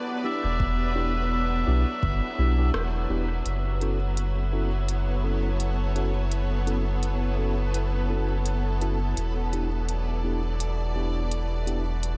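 Meditative and spacious, this ambient dub excerpt moves at 84 BPM in 4/4 with a light sixteenth-note swing. It opens on Em7, shifts to F#m7 at 3.5 seconds, and returns to Em7 at 9.2 seconds. A clear, bowed symphonic string section holds sustained chords with light vibrato and vintage sampler grit, over a round, up-front sub bass and a reversed, detuned, granular texture that stays in the background. A reedy, breathy melodica sings a brief dub-echoed phrase on E5, while a filtered tine electric piano drops echoing stabs through a combo amp. An overdriven electronic kick thumps briefly in the background, then a tape-toned electronic kit with crisp hats and rim clicks takes over from 2.7 seconds, marked by a band accent at its entrance.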